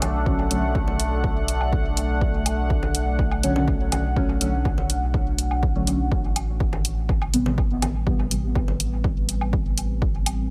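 Set in a digital ambience, this short cut from a longer dub techno piece in straight 4/4 feels cavernous and nocturnal. A deep, moody pad of detuned sawtooth and sine layers, with a sub octave, wave folding and ring modulation, holds sustained chords with a slow attack and long release. Chorus and its own reverb soften the pad, and sidechain pumping makes it breathe. A round sine sub bass sits beneath it, also pumping, while a punchy layered electronic kick enters at 0.3 s alongside a soft, detuned chord stab carrying chorus, phaser, 12-bit sampler grit and dub echo, its filter sweep and moving notch giving it a dark, decaying shape. Electronic hi-hat and overdriven congas and woodblock, the percussion pumping and thrown into dub echo, fill out the groove. The harmony shifts from Bm9 to Am9 at 6.1 s, and the stab drops away at 8.4 s.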